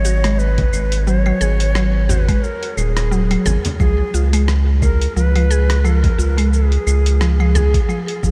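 Hypnotic and meditative, this short cut from a longer organic downtempo piece moves at 88 BPM in 4/4 with a gentle 16th-note swing, resting on G#m7 before shifting to C# at 3.8 seconds. A Native American-style cedar flute carries the melody between G#4 and C#5, its airy, woody tone marked by vibrato, tongued notes and a soft chiff, all trailed by tape echo. Beneath it, a mallet-like synth pluck spins arpeggios with a full-bodied, percussive attack that decays, thickened by chorus and tape echo. A round analog bass sits up front, deep and dark, pumping with sidechain compression, while a gritty, overdriven sampler-style soul kit adds claves, hi-hat, rim click and shaker from the start. At 0.6 seconds a thumpy, compressed electronic kick arrives alongside a very quiet frame drum played with soft hands, and light reverb gives the mix a gentle sense of space.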